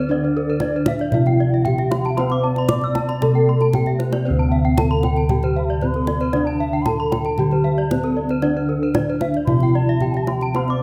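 A straight, steady 4/4 pulse carries this ceremonial, shimmering Balinese gamelan excerpt, where dark, round bossed gongs sit up front on the bass beneath a mellow, padded-mallet bronze metallophone melody, a wooden-mallet metallophone accompaniment and two horn-mallet metallophones spinning bright arpeggios (one tucked in the background, the other close-miked and full), all with paired tuning and shimmering beats, while an airy bansuri with vibrato and a crisp attack traces a second line, and a tight kendang enters at 0.6 s and adds a fill at 3.9 s, all in a moderate recital-hall reverb.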